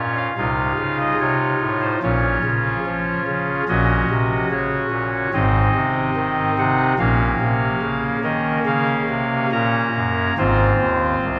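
In a steady, straight 4/4 at 72 BPM, this serene and reverent classical chorale excerpt features a solo pipe organ on a soft reed oboe stop with baroque voicing and a touch of chiff, sitting up front and ranging from Ab1 to Bb5 across 11.4 seconds, moving through chords such as F7/C, Bbm, Gb/Bb and Ab before settling on Fm/Ab, all bathed in a long church reverb and colored by the warbling pitch drift of worn cassette tape.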